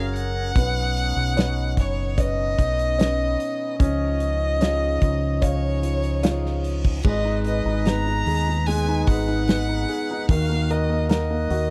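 A dry, close 1970s-style studio sound frames this tender, emotional pop ballad fragment, where a clear, focused violin with vibrato carries the melody over an intimate concert grand piano with audible action noise and a full-bodied, fingerpicked jumbo acoustic guitar playing arpeggios in the background. A clean tonewheel organ with key click and slow rotary speaker holds sustained chords beneath, while a round, dark dub bass sits up front alongside a loose indie drum kit with dark cymbals and a tight kick that comes in at 0.2 seconds. An electronic reverse cymbal sounds from 6.2 seconds, leading into the shift to a minor-chord passage at 7.0 seconds.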